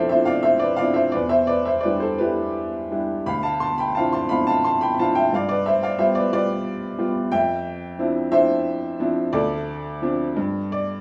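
In a 6/8 with rubato at roughly 56-61 dotted-quarter beats per minute, this melancholic, dark classical excerpt features a single clear upright piano, woody and boxy and placed up front, ranging from D2 to C6 in D dorian through chords such as Dm9, Em7 and G7 within a moderate recital hall reverb, closing with a brief piano fill at 10.4 seconds.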